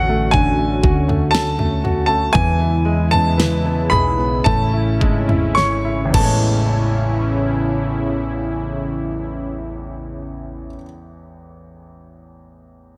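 This tender, emotional pop ballad excerpt in A major opens with a baby grand piano carrying the melody high in its range, polished and up front, over a second, concert grand piano whose intimate accompaniment reaches into deep bass and lets its action noise be heard. A smooth, detuned sawtooth pad with a soft attack and chorus sustains chords beneath, while a pizzicato upright bass adds a woody, thumpy, dark tone from its gut strings. At 0.3 seconds a produced, layered electronic pop kit joins with a knocking kick, fat snare, crash cymbal and toms, its sound slightly tape-warmed. The slow 4/4 tempo of roughly 51-61 BPM eases back through the opening phrase, which moves from Dmaj7 to E6 and settles on Amaj7. A drum fill arrives at 5.6 seconds, and the kit stops at 6.4 seconds, just before a new section begins at 6.7 seconds, with the pianos, pad and bass continuing in light reverb and small-room ambience.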